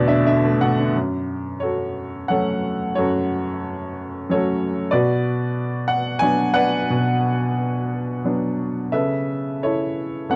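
A short upright piano fill opens the recording over an E7sus4 chord before settling into F# minor at 0.9 seconds. This is a lyrical classical piece for solo piano in 3/4 at 89 BPM, played with a rubato feel that gives the phrasing a cool, brooding character. The upright piano sits up front with a clear, woody tone and long sustain, ranging from E2 to G#5. The harmony moves from F#m to Bm at 4.9 seconds and then to Aadd9/C# at 8.9 seconds. Light reverb and a dark production frame the instrument, and the passage is cut from a longer piece, ending at 10.4 seconds.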